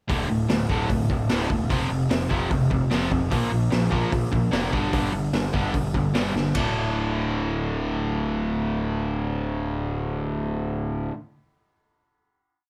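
A fast, straight 4/4 punk rock groove at 149 BPM drives this short, complete piece in D minor, aggressive and raw from the first beat. The raw garage drum kit sits up front with a punchy kick, medium-tuned snare, hi-hat and ride cymbal, its small-room sound gritty and saturated with a rolled-off top, and it plays until a drum fill at 6.3 seconds before dropping out at 6.6 seconds. Leading the mix, the distorted electric guitar chugs palm-muted eighth notes in a bright, double-tracked and compressed riff, moving through D5, F5, Bb5 and G5 power chords across the verse. Underneath, the fuzz picked electric bass growls out driving eighth notes, overdriven and direct-amped. At 6.5 seconds the band lands on a final D5 chord that the guitar and bass hold until about 11 seconds, all under a light reverb.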